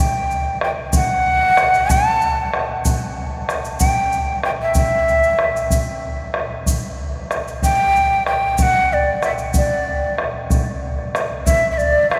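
Bathed in a long, wet cathedral reverb, this earthy, festive Andean folk excerpt in a straight 6/8 puts a breathy, wooden large quena at the front, carrying the melody between D5 and A5 with a crisp, chiffy attack and straight tone, over a round, close bombo and a grainy, bright tube shaker that share a vintage, band-limited colour, the phrase stated once and then again from 6.7 s.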